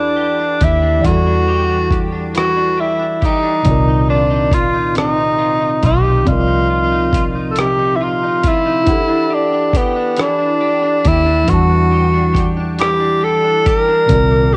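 Slow six-eight R&B at 46 BPM in E minor, late-night and yearning, where an up-front tenor saxophone with light vibrato and a smooth top sings a jazz-style solo melody over mellow tine electric piano, a bright, twangy picked electric guitar with analog chorus tucked in the background, and a dark, round, foam-muted fingered bass, while a gritty, compressed sampler-style drum kit of thumpy kick, hi-hat and rim click, treated with cassette tape, enters at 0.6 s as the harmony moves from Em11 to Cm11 at 3.7 s and back to Em11 at 8.9 s, all wrapped in digital ambience with the character of a home cassette recording cut from a longer piece.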